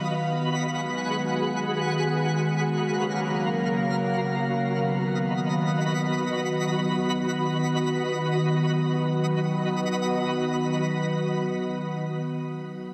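Unfolding in free time, this blissful, floating hip hop fragment pairs a glassy, mellow FM pad holding sustained chords through ensemble chorus, a low-pass filter and a filter sweep across its first 8.4 seconds, with a twinkling, sparkling granular texture carrying an octave-up shimmer, both sitting up front with slow attacks and long releases as the harmony drifts from B through G#m7 and F#maj7 back to B, all bathed in a moderate shimmer reverb and a dense, heavily limited modern master.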